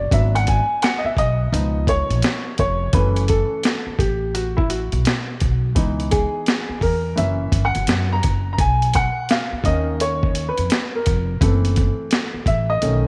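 Lightly reverberant and cut from a longer piece, this cool, smoky jazz-hop track sits at 85 BPM in 4/4 with a 64% swing on the sixteenths and a slightly sharp tuning of A4 = 441 Hz. A gritty, compressed boom bap drum kit with a sampler feel sits up front: its pitched-down sound carries a thumpy kick, a high-tuned snare and hi-hat, with the air of a large room around them. An upright piano, also up front, has a smooth, vintage tone with short sustain and plays a solo across the whole stretch from 0.0 to 13.1 seconds. Underneath, a dark, woody upright bass with steel strings is plucked pizzicato in the low register. The harmony moves through jazzy extended chords, from G#m7b5 and C#7 to F#m7, then on through C#m7 and F#7 to a lush Bmaj9, before settling on F#m7b5.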